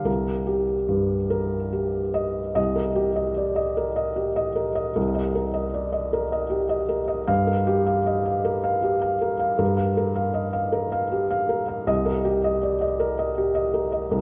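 A wet hall reverb surrounds this short fragment of a longer piece, giving the sound a churchlike depth while the instrument itself stays close and intimate. It is a neoclassical minimalist piano piece, melancholic and wistful, in 6/8 played with a loose, rubato feel. A felt-muted upright piano plays alone throughout, its thick felt lending the tone a soft, mellow, muffled quality that spans from deep bass notes up into the middle of the treble. The harmony rests on Cm7, moves to Gm7 at 7.3 seconds, and returns to Cm7 at 11.9 seconds. A brief opening passage gives way at 2.6 seconds to a longer second section that carries the fragment to its close.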